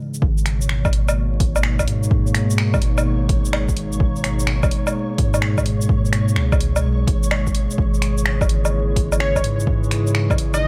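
A warbling, nostalgic pad with 12-bit grit and sidechain pumping opens this rainy, melancholic future garage cut in G# minor at 127 BPM, soon joined by a swung deep house kit of finger snaps, hi-hat, shaker and woodblock, a punchy electronic kick, a round, pumping sub bass and a faint flickering granular texture from 0.6 seconds, before a catchy, detuned unison lead with dub echo arrives at 9.2 seconds, all within an echo-heavy mix dusted with vinyl crackle.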